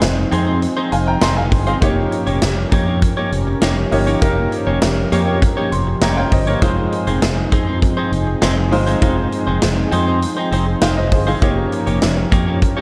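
A big rock drum kit with a punchy kick, a round fretless bass, a bright baby grand piano, a clean picked electric guitar riff carrying lush chorus and analog delay, and a smooth, warbling analog pad open this moody, nostalgic 1980s-style pop excerpt, with a band accent from 4.2 s, a brief funky sawtooth polysynth stab at 5.1 s and a grand piano fill at 5.4 s, all floating in a dreamy, reverb-soaked hall.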